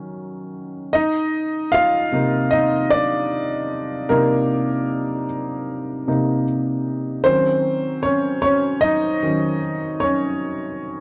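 An upright piano carries this short R&B fragment entirely on its own, from 0.0 to 11.0 seconds, with a woody, intimate tone and audible action noise that keeps the instrument sounding natural and up front. The mood is sultry and late-night, and a gentle swing on the sixteenths gives the unhurried 4/4 pulse a relaxed sway. The harmony opens on Ebm7, settles into a long stretch of Cm11 from 0.9 seconds, and returns to Ebm7 at 7.2 seconds. The playing spans the middle of the keyboard, from C3 up to F5. Only light reverb colours the dry, close sound of a 1970s-style studio, so the piano feels as if it is in the room with the listener.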